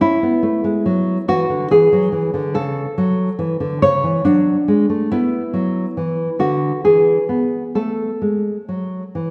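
A dark, thumb-plucked nylon-string guitar with fresh strings sits up front as the sole voice of this flowing, serene baroque-style classical dance in A major, moving in an unhurried 3/4 at 70 BPM with rubato and uneven beats, passing through chords such as E7, D/F# and Dadd9 before the harmony falls away at 7.8 seconds, all bathed in a wet scoring-stage reverb in this short excerpt from a longer piece.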